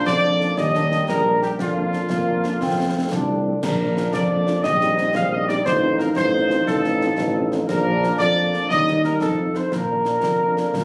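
A military-style march for wind band in 6/8, this short cut from a longer piece sounds rousing and spirited. A dark trumpet section carries the melody up front, tight and lightly vibratoed, yet distant and roomy in a classical style. Beneath it, a trombone section holds sustained chords in the background, while a mellow, soft-attacked tuba with a smooth top plays the bass line from 0.1 seconds. A very quiet French horn section adds accompaniment from 0.2 seconds, and concert snare drum, concert bass drum and clash cymbals, with shadowy cymbal tone, sit close and dry. The harmony circles through simple major chords and a few sevenths before settling on the home chord. The recording carries a moderate large studio reverb, plus the club ambience and compression of a phone capturing the room.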